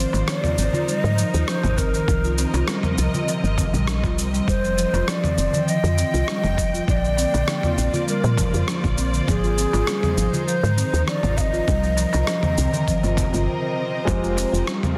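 A hypnotic, meditative organic downtempo excerpt at 100 BPM in F dorian opens on distant, vibrato-rich strings pumping against a buzzing, soft-mallet marimba arpeggio trailed by digital delay and a round, woody FM bass, as a gritty sampler-style soul kit with rim clicks, shaker, toms and a softly clipped snare joins a crisp metal-shell darbuka in the background, a breathy, tongued ney melody with delay floats above chords moving from Abadd9 through Cm7, Fsus2 and Bbadd9, a thumpy electronic kick arrives at 1.8 seconds, and a felt-muted upright piano with audible action noise slips in at 14.0 seconds, all set in a moderate concert hall reverb within a dense, heavily limited master.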